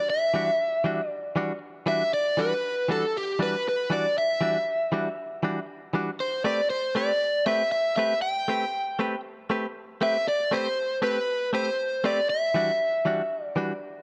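Mournful and brooding, this blues excerpt moves at 118 BPM in a straight 4/4 feel in E minor. An overdriven semi-hollow guitar carries the melody from G4 to G5 throughout its 14 seconds, its picked, hollow-body tone sitting up front with a slapback echo. Beneath it, a direct-recorded clean electric guitar plays stabs from E3 to B4, bright, twangy and compressed, set a little lower in level and washed in spring reverb. The harmony rests on Em9, shifts to Am9 at 6.2 seconds, and returns to Em9 near the close. The sound is dry and close, evoking a 1970s studio with a touch of digital ambience.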